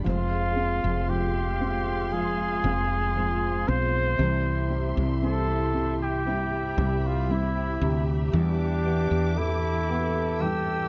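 Heartfelt and hopeful, this short pop passage moves at a slow, straight 4/4 pulse in a dry, close studio sound with a 1970s character. The flugelhorn carries the melody up front with a vintage, vibrato-rich tone, entering at 0.1 s alongside a mellow French horn section that sits in the background on a second line. Underneath, a round, punchy fretless electric bass with a woody, hollow-body voice anchors the low end, while a fingerpicked steel-string acoustic guitar plays full-bodied arpeggios, its finger squeak audible. A felt-muted upright piano adds soft, intimate accompaniment, and a con sordino string section holds veiled, dark sustained chords at a distance. The harmony shifts from Fm to C at 4.2 s and on to Em7 at 8.3 s, and the passage is cut from a longer piece.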